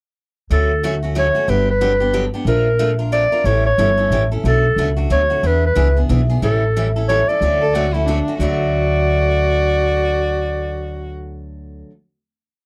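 A swinging 3/4 lilt at 183 BPM drives this short, lively and playful acoustic string swing piece in D major, with a woody upright bass playing roots and fifths with walk-ups under a bright picked steel-string guitar that strikes every beat, short and accented on two and three. Up front, a clarinet carries a hook-based jazz melody with light vibrato, subtone and scooped notes, and at 7.6 seconds a rich bowed violin enters with expressive portamento, answering phrases in the melody's rests. The close, dry studio sound with light reverb closes on a final D chord at 8.4 seconds.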